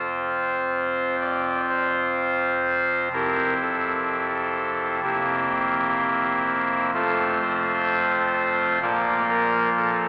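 Majestic and serene, this brief cut from a longer classical chorale-style piece features a solo pipe organ on a soft reed oboe stop with baroque voicing and a crisp chiff, placed up front and moving with an unhurried rubato beneath a long, wet church reverb, all heard through a thin AM radio sound.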